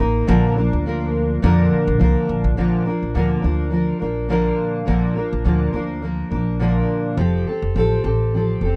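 Dry and close, with the intimate sound of a 1970s studio, this short excerpt from a longer acoustic pop piece moves at an easy-going 104 BPM in Bb major with a gentle sixteenth-note swing. A double-tracked, fingerpicked steel-string dreadnought guitar sits up front with a warm, heartfelt tone, while a pizzicato upright bass adds a woody, dark foundation beneath it, both playing throughout the 8.8 seconds. The harmony rests on Bb before shifting to Fadd9 at 7.2 seconds.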